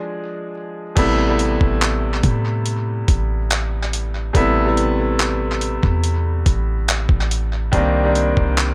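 Contemporary R&B in A minor at a slow 71 BPM with a longing, late-night mood, this short fragment opens with a clear, up-front grand piano alone under tape echo before a deep, boomy 808-style bass with a dark, decaying sine tone and a gritty, tape-warm sampler-style drum kit with a thumpy kick, handclaps, hi-hat and crash enter at 1.0 seconds, the drums also washed in tape echo, all set in light reverb within an echo-heavy mix.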